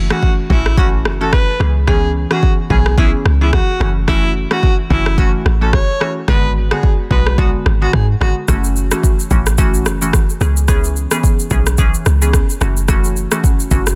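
Hypnotic and sultry, this afrobeats excerpt moves at 109 BPM in F# minor with a swung sixteenth-note feel. A breathy, intimate alto saxophone carries a whispered pop-style solo with light vibrato and tape echo until 8.3 seconds, over a glassy, crystalline wavetable pluck with chorus and a round, dark log drum bass. An overdriven electronic drum kit sits up front with deep kick, rim click and shaker, all in a dense, heavily limited modern master with digital ambience.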